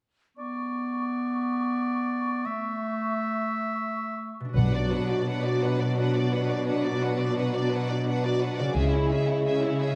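In a 12/8 metre, this swashbuckling, determined heroic adventure film score opens with a bright oboe, a clear clarinet and an airy flute section sharing supporting lines, then a ringing harp enters with arpeggios at 4.4 seconds and the build begins at 4.6 seconds as a lush violin section carries the melody over a second, expressive violin line, a background viola section and mellow French horn chords, with an up-front cello section and brief double bass notes holding the bass and a round soft-mallet timpani stroke, set in a reverberant recital hall.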